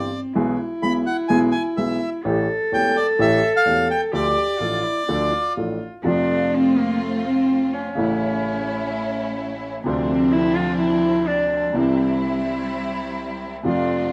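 A reedy, dark bandoneon sits up front and carries the melody in a high register through this melancholic, dramatic tango fragment, its airy tone falling away at 5.5 seconds. Beneath it, a single bowed cello plays a second line played sul tasto, with a soft attack, a pure, floating sound and a smooth top. A grand piano with a warm, smooth, vintage character supplies the accompaniment, reaching from deep bass notes up into the middle register. The pulse is in 4/4 but moves with a rubato feel, and the harmony turns brighter as a new section begins. A rich, lush symphonic string section enters at 6.0 seconds with even, vibrato-laden stabs, and from 6.1 seconds the cello takes a solo over them. The instruments are set in a moderate studio ambience, and the piece is cut from a longer work.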